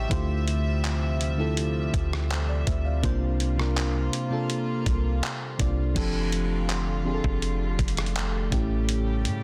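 Romantic and dreamy, this contemporary R&B fragment, cut from a longer track, pairs a round, dark FM electric piano with chorus up front against a soft, floating bed of distant bowed strings and a deep, boomy 808-style bass, while a gritty, sampler-style drum kit with a thumpy kick, hi-hat, rim clicks, handclaps and crash cymbal joins from 0.1 seconds, all held dry in a dense, heavily limited modern mix.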